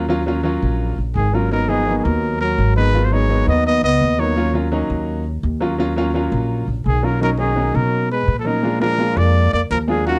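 A clear, intimate grand piano with audible action noise and a woody, dark pizzicato upright bass open this driving, sultry jazz excerpt in straight 4/4, both up front in a moderate studio room. At 1.2 seconds a close-miked trumpet with a soft attack takes the melody while a mellow, breathy trombone with light vibrato sits in the background on a second line; both drop out and return together at 6.9 seconds. The production is dark and warm, moving through minor-seventh harmony before closing on a major-seventh and dominant chord.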